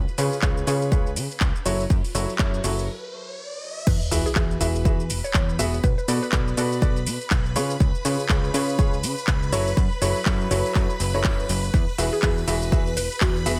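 Set in a digital ambience, this euphoric, joyful piano house excerpt has a punchy, tape-warm electronic kick sitting up front, re-recorded in a small room alongside a layered house kit of handclaps, metallic hi-hats, shaker, ride and crash cymbals. A worn concert grand piano with deep bass and short sustain carries the swung riff, its sound pumping with the sidechain and trailing dub echo. Beneath it, a funky analog bass built from sawtooth and pulse waves plucks with a fast attack and decays, also pumping, while a vintage string machine of violins holds shimmering, bright chords with a slow attack and ensemble chorus. An electronic riser enters at 2.1 seconds, leading through a short break into the drop at 3.9 seconds, where a sub drop impact lands. A woody, round, mallet-like FM pluck with a noise layer sings a mellow melody in the background through lush chorus, cassette tape colour and dub echo, returning at 11.7 seconds as the chords cycle back to Eadd9.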